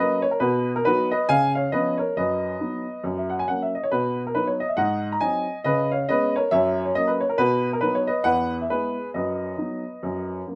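A lone upright piano opens this short stride jazz passage, cut from a longer piece, and carries it alone from the first moment to its end at 10.6 seconds. The mood is playful and exuberant, with a lively swung feel in common time. The instrument sounds woody and natural, with a long sustain that lets its notes ring, and it sits up front in the mix. Its playing spans from deep bass notes to bright upper treble, moving through a cheerful progression colored by seventh chords before circling back toward its home chord. Light reverb gives the piano a touch of room around its warm tone.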